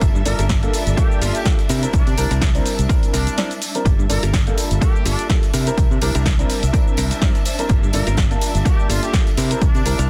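A punchy, tape-warm electronic kick sits up front from the opening beat, joined at once by an analog drum machine's hi-hat, shaker and snare, a tambourine tucked in the background, a bright fingered electric bass and a clean, compressed guitar riff recorded direct. This nostalgic, sensual slice of filtered disco house moves at 125 BPM in 4/4 with a gentle 16th-note swing, centered on G dorian as the harmony alternates between Gm9 and C9. A dark, mellow baby grand piano comps through a phaser, its worn, boxy tone carrying audible action noise. A distant, roomy trumpet section then carries the melody with light vibrato, roughened by vintage 12-bit sampler grit and a digital delay, while a lush symphonic violin section, present from the very start, holds bowed chords far behind. A brief break arrives at 3.4 seconds, and the guitar steps out with a fill at 7.0 seconds, with sidechain pumping breathing through the strings, guitar, bass, piano, trumpets and the drum machine's hats and percussion. 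The mix is dry, dense and heavily limited in a modern style, and the excerpt is cut from a longer piece.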